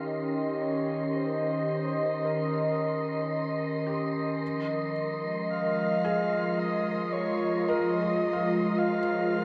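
Built on a warbly, nostalgic tape-like pad held up front with chorus and phaser, this peaceful, weightless ambient piece at 55 BPM in Eb mixolydian drifts from Eb7 to Fm7 as a breathy, flute-like synth lead with vibrato and a soft felt-muted upright piano playing arpeggios in the background, its action noise audible, fade in together across the full 9.4 seconds, while an airy, wind-like tuned noise texture hovers high above inside a huge, wet reverb with shimmer on every part.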